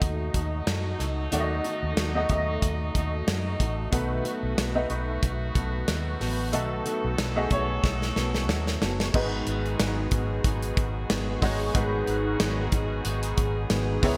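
Swung sixteenths at 92 BPM in 4/4 drive this earnest piano-driven pop passage. A punchy, up-front studio drum kit with gated reverb and a fill from 7.8 to 9.1 s plays alongside a dark, round, foam-muted electric bass, while a woody upright piano with long sustain and chorus carries the accompaniment over D#dim and B7 before moving to G#m7 at 9.1 s. A full-bodied, fingerpicked steel-string acoustic guitar riff with chorus sits in the background, and a nasal, stopped French horn section holds brilliant sustained chords, the whole mix wrapped in a bright 1980s-style digital sheen and small-room reverb.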